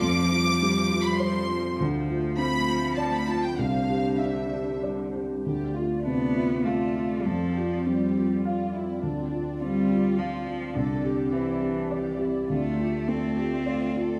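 Heard through a moderate recital-hall reverb, this fragile, reflective neoclassical excerpt moves in a rubato three-four, with a felt-muted upright piano up front playing soft, dark, intimate accompaniment, a warm studio violin section carrying the smooth, vibrato-laden melody, a single rich cello bowing a focused second line, and a hollow, flute-like pad with ensemble chorus holding sustained chords in the background.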